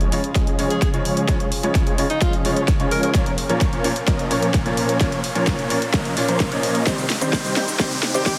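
Festival progressive house in an emotional, euphoric build-up, cut from a longer piece: huge, detuned supersaw chords pump with sidechain and a filter sweep, while a brilliant, worn grand piano accompanies and a very quiet, lush pad holds the harmony over an overdriven big-room kit of hi-hat, shaker and a huge snare playing a drum fill. A punchy, up-front electronic kick arrives at 0.4 seconds, and a bright alto saxophone with vibrato and gritty 12-bit sampler texture sings a short pop-style line from 0.7 seconds. An electronic riser sits in the background from 2.9 seconds as the chords move from Db to Bbm to Cm, set in a moderate, lush hall reverb and a dense, heavily limited master.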